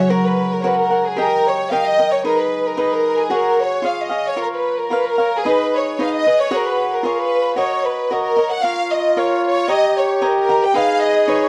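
A rubato 2/4 pulse at 113 BPM carries this romantic, festive mariachi fragment in F# major, where a lush, up-front violin section sings the bowed melody with expressive vibrato, a soft attack and a slapback echo over crisp, picked cavaquinho accompaniment, while a ringing, thumb-plucked concert harp adds arpeggios until 2.1 s and a mellow, close-miked trumpet in classical style, heard only briefly at the very start, returns with a second line at 8.6 s, all captured in a dry, close 1970s-style studio sound with a moderate booth ambience.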